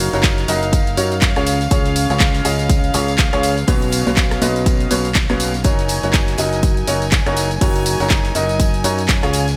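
Euphoric, feel-good piano house with a swung 16th-note groove, built on a woody, up-front upright piano riff roughened by vintage 12-bit sampler grit and delay, sustained chords from a biting, earthy chamber violin section, and a growly fingered electric bass, all three pumping to the sidechain, while an overdriven, punchy electronic kick sits up front over a tape-warm analog drum machine of handclaps, hi-hat, rim click and tambourine, backed by a very quiet arena kit with bright cymbals and a faint band-limited tambourine, all in a bright 1980s-style digital production with light studio reverb.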